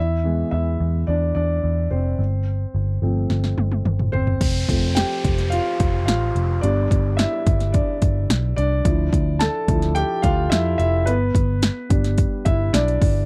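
A concert grand piano with a deep low end and a round, foam-muted picked electric bass open this driving, earnest piano-driven pop excerpt in a straight 4/4 feel, before an overdriven, layered deep house kit with a deep kick, punchy snare and metallic hats enters on a fill at 3.3 seconds and an electronic downlifter sweeps through from 4.4 to 8.8 seconds, all captured in a dry, close 1970s-style studio sound.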